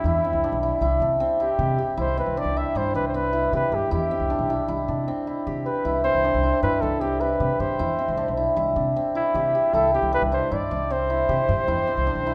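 From the first moment, an up-front warm flugelhorn carries a playful, restless melody with vibrato and scooped, pop-style notes over shimmering, ringing hammered dulcimer arpeggios and woody, thumpy pizzicato upright bass, in a contemporary instrumental fragment in 5/4 that rests on a C chord and sits in a wet recital hall's reverb for its 12.3 seconds.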